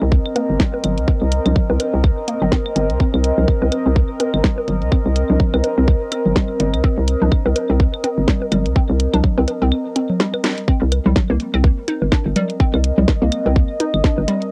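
Minimal techno at 125 BPM with a swung 16th feel and a quirky, cool mood in C minor over a Cm7 chord, built from a hollow, nasal square-wave pluck riff with tape echo and a moving notch, a bouncy, punchy FM bass with tube saturation, a warbling, nostalgic lo-fi pad that sustains darkly behind them, a tight, up-front electronic kick, dry analog claves, bongos and congas, and a garage kit of hi-hat and cracking snare, all riding sidechain pumping on the melodic parts while a filter sweep moves over the synth arpeggio sound until a break at 9.7 seconds and a drum fill give way to the drop at 10.7 seconds, the whole home cassette recording carrying light reverb.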